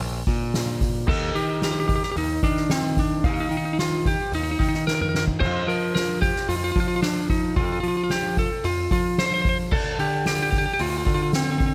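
Set to a steady, straight 4/4 pulse at 111 BPM, this cinematic, soaring post-rock passage is cut from a longer piece and tuned slightly sharp to A4 = 445 Hz. A soft-mallet drum kit enters at 0.3 seconds, up front and natural in a hall-like space, its dark cymbals, fat snare and boomy kick rounded by mallets, with a drum fill at 4.9 seconds. Beneath it, a growling picked electric bass sounds bright and overdriven, played direct and amped in the low register. The lightly driven lead guitar arrives at 1.1 seconds with a warm, slightly broken-up, compressed tone up front, carrying the melody through a digital delay. In the background, a twangy pedal steel guitar holds sustained chords with fingerpicks, volume swells and slide under a subtle chorus, while the harmony moves from Bbadd9 through Eb and F7sus4 to Dm7 inside a small room ambience.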